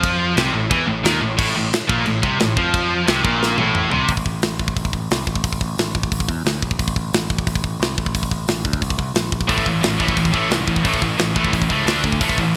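A driving, straight 4/4 pulse from a tight metal drum kit, with its up-front kick, medium-tuned snare, china and crash cymbals, hi-hat and toms, pushes this aggressive, relentless heavy metal cut, and a drum fill closes the opening riff at 4.1 seconds. Two scooped, high-gain distorted guitars hammer out the riff, then fall away while the growling, overdriven picked bass and drums carry on alone until the guitars return at 9.5 seconds on power chords. A lush hall reverb and bright 1980s-style digital production give the whole a polished, forceful sheen.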